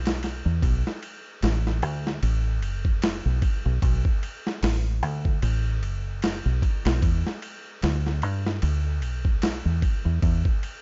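Trip hop at 75 BPM in B minor with a 16th-note swing, this hypnotic, cinematic excerpt sets a deep dub fingered electric bass, round and foam-muted, up front between F#1 and G2 from the start. Beside it sits a dusty soul sampler-style drum kit of hi-hat, kick, ride and snare, gritty and overdriven with a thumpy kick, a medium-tuned snare and studio reverb. A dark digital ambience colours the whole cut, which runs to 10.8 seconds.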